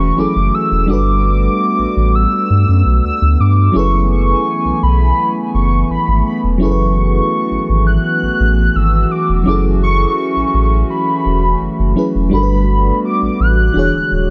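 A velvety, detuned synth lead carries the melody up front, its soft attack and smooth sustain thickened with chorus and digital delay, in this late-night, moody R&B excerpt at 84 BPM in straight 4/4. Beneath it, an FM electric piano with tremolo supplies dark, full-bodied accompaniment, its fast-attack notes decaying over a noise layer. A hollow, flute-like pad holds sustained chords with a slow attack and a chorus shimmer. Anchoring everything from the low end, a round sine sub bass sits deep and up front. The harmony drifts between lush Amaj13 and Gmaj9 voicings, settling on Amaj13 from 3.8 seconds before turning back to Gmaj9 and closing on an E13, all wrapped in a digital ambience that deepens the nocturnal atmosphere.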